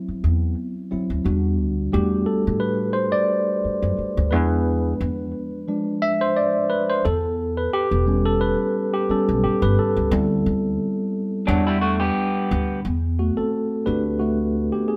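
R&B with a neo-soul lean, this smooth, soulful passage is cut from a longer piece and moves in an unhurried 4/4 with a light sixteenth-note swing. A clean tine electric piano, heard through its own built-in speakers, takes the solo from the opening moment to the end at 15.0 s. It sits up front over rich extended chords such as Em9, Em11, E7b9 and D13sus4. Beneath it, a pizzicato upright bass with steel strings gives a woody, growly, thumpy low end, also placed close. At 11.5 s an electric guitar through a small old amp adds a brief fingered second line that is dark, slightly broken-up and compressed with a lo-fi edge, and it stops at 12.8 s. The trio sounds like a band playing live together in one room, lightly touched by reverb.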